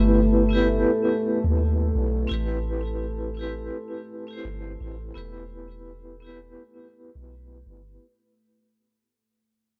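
From the first moment, this cinematic, hypnotic trip hop fragment in E minor sets a vibraphone, a dark ambient pad and a soft 808-style bass together at 84 BPM in 4/4, with a 16th-note swing feel. The vibraphone, struck with hard mallets, sits up front with a metallic, ringing tone, a fast motor vibrato and a boxy small-room character, further shaped by tremolo, a low-pass filter and tape echo. Beneath it, the deep, moody pad holds sustained chords with a slow attack and long release, its sawtooth-and-sine unison voice and sub octave thickened by chorus and built-in reverb. The bass is round and sine-like, with a fast attack and decaying notes, and tube saturation colours it as it sits up front in the mix. The harmony moves from Em/G to Am7 at 2.3 seconds and back to Em at 5.2 seconds. Cut from a longer piece, the whole 8 seconds fades out through a gritty, dry hardware sound touched by studio reverb.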